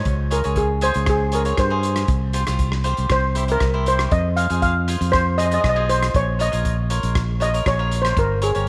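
A shimmering, metallic steel pan struck with medium rubber sticks carries the melody up front through this driving, tense calypso excerpt in F minor at 118 BPM, over crisp picked acoustic cavaquinho, a bright, growly fingered electric bass that sits just as forward, and a loose indie drum kit of hi-hat, tight kick and rim click with a rolled-off top in a small room, all set in a moderate echo chamber reverb as the chords move from Dbmaj7 through Csus4 and C to Fm, Bbm and Gdim.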